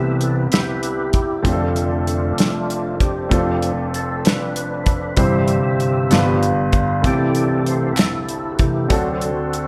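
A moderate large-studio reverb surrounds this hopeful, soulful slow gospel piece in 6/8 at 64 BPM in C major, where a gritty, overdriven tonewheel organ with slow rotary speaker and chorus vibrato solos over sustained chords, a clear, intimate grand piano with audible action noise accompanies up front, a warm soul drum kit with a tight kick and rolled-off top enters at 0.2 s, and a crisp group handclap sounds briefly in the background at 8.0 s.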